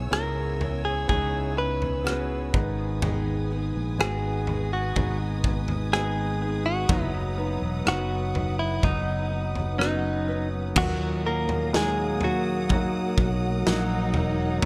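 Drenched in echo under a light reverb, this melancholic, heartbroken pop ballad sets a clean, compressed electric guitar melody with analog delay over intimate, long-sustaining concert grand piano with its own delay. Around them sit lush bowed strings with vibrato and portamento, a very quiet, bright picked acoustic guitar playing arpeggios until 10.8 s, and a growly, up-front fretless bass with analog chorus. A distant, roomy drum kit adds punchy kick, rim clicks, toms and crashes, while a dark, woody cello section with delay joins in the background at 10.8 s.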